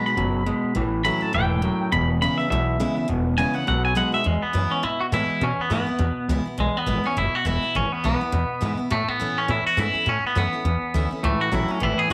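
A retro, rowdy rockabilly cut in E major at a brisk 206 BPM with a swung feel opens with a bright, compressed, twangy electric guitar soloing up front through tape echo. A slightly broken-up electric guitar adds a fingered low riff until 4.2 seconds and returns at 11.2 seconds, while a bright picked steel-string acoustic guitar plays accompaniment and a woody, thumpy pizzicato upright bass with gut strings anchors the bottom. Moderate spring reverb and studio ambience give the piece a lively, vintage space.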